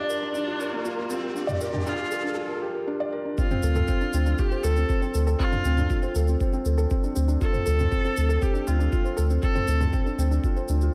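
A soft, felt-muted upright piano sits up front with a mellow riff through analog delay, joined by a solo bowed viola whose rich, nasal melody carries vibrato and its own delay, in this hypnotic, melancholic piano and strings electronica excerpt. An electronic riser builds over the opening alongside overdriven electronic shaker and toms, and after a short break the drop arrives at 3.4 seconds with a muffled, thumpy kick, followed a moment later by a deep, round sine sub bass with sidechain pumping. The dreamy mix is soaked in plate reverb as the harmony moves from Gm7 to Dm7.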